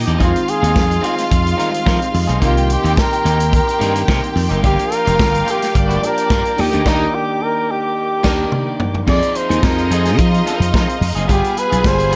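A jazz-style flugelhorn carries the melody in this driving, danceable disco groove, its soft attack and light vibrato sitting present over the band. Beneath it, a growly, punchy slap bass drives the track up front alongside a warm vintage drum kit with a natural small-room sound, medium-tuned snare and a rolled-off top. Two bowed string ensembles fill the harmony: a lush, biting section plays a distant second line while a close, woody sul tasto section holds sustained chords further back. A mellow, worn grand piano with audible action noise and a scooped, slightly broken-up picked electric guitar add accompaniment in the background. The full band hits an accent at 6.9 seconds, a drum fill follows at 8.0 seconds, and the harmony turns to a new section at 9.1 seconds, all in light reverb and small-room ambience.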